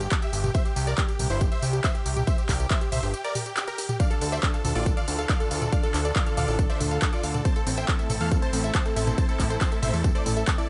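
A huge, euphoric supersaw lead carries the melody through digital delay and sidechain pumping in this bittersweet, soaring uplifting trance excerpt at 139 BPM in D minor. A very quiet, punchy unison pluck joins it on a second line, and the track is driven by an up-front fat, detuned analog bass, a punchy overdriven electronic kick and an overdriven big-room kit of handclaps, metallic hats, tambourine and toms. After a brief break at 3.1 seconds, a lush bowed string section and a round, chorused analog pluck arpeggio enter in the background at 4.0 seconds as the harmony moves from C to Dm and Am, all in a dry mix.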